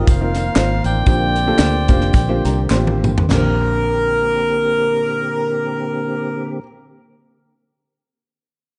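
Soulful and reverent, this short cut from a swung, uptempo gospel piece slows as a bright, tight saxophone section carries the melody over a mellow, worn grand piano with audible action noise, clean tonewheel organ chords with key click, chorus vibrato and slow rotary speaker, and a round, foam-muted fingered electric bass. The piano plays a fill from 1.6 seconds, and an up-front funk drum kit with a high-tuned snare and dark cymbals adds its own fill at 2.7 seconds. The drums and the background tambourine, tube shaker and group handclaps stop at about 3.5 seconds, leaving the sax, piano, organ and bass in a warm studio reverb.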